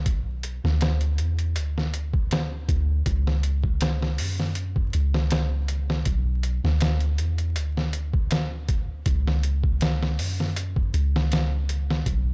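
A blown-out, overdriven sound with vinyl crackle and little reverb frames this dark, hypnotic trip hop excerpt at 80 BPM in 4/4, set in C# phrygian with a light swing on the 16ths. A soft 808-style bass sits up front from the start, deep, round and sine-like, with a fast attack that decays into a murky low end between B1 and F#2. From 0.1 seconds a compressed, pitched-down sampler-style drum kit joins it, muffled yet close, pairing a thumpy kick and a medium-tuned snare with hi-hat.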